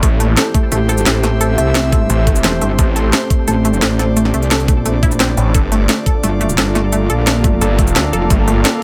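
A snarling, growling distorted saw bass sits up front in this dark, mechanical slice of technical drum and bass at 174 BPM in A phrygian, dropping out between 3.1 and 5.4 seconds while a metallic, FM-toned wobble bass with chorus enters at 0.7 seconds. A layered electronic kit with a cracking snare, crisp hats and shaker, plus a knocking electronic kick, drives the straight 4/4 groove, and a lush, punchy unison pluck plays arpeggios through tape echo with sidechain pumping. Behind them, a deep, moody ambient pad with 12-bit sampler grit holds sustained chords that move from Am to Gmadd9 at 5.5 seconds, while a soft, breathy pad adds texture, all in a light reverb.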